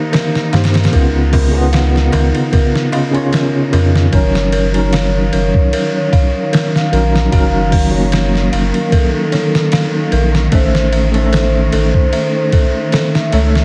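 A clean tine electric piano with tremolo and tape echo opens this brooding, cinematic trip hop excerpt at 75 BPM alongside rich, bowed studio strings in the background and an eerie, inharmonic detuned synth bell playing arpeggios, before a muffled, pitched-down sampler-style drum kit with a thumpy kick, a very quiet crisp darbuka and, from 0.5 s, a deep, round sub bass up front join in, the darbuka dropping out at 4.1 s as a pure, breathy sine lead with chorus and vibrato takes the melody, all beneath light reverb, vinyl crackle and a heavily compressed radio sound.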